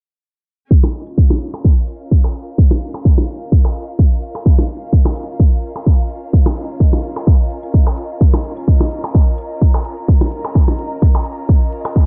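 Hypnotic and quirky, this minimal techno excerpt rides a punchy, up-front electronic kick with a very quiet hi-hat and delayed percussion blips and claves that carry a large-room ambience, all set to a light swing. Behind them, a lush, distant symphonic string section plays with vibrato and sidechain pumping over a single B-flat minor chord, while a detuned, triangle-toned gated texture pulses in the background through chorus and reverb. The bright 1980s-style digital production stays dry overall, with a low-pass filter sweep running through the whole passage from 0.7 to 12.1 seconds.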